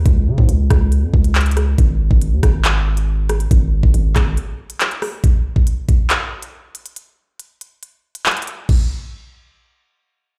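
Played through a big sound system in a bare room, this dark, ominous half-time drill fragment from a longer hip hop track sets a deep, sine-toned 808-style bass with a fast attack and long decay up front beside an electronic drill kit of knocking kick, crisp hi-hats, handclaps, rim clicks and crash cymbal, until the bass drops out at 4.4 s for a short break while the drums continue to 8.8 s.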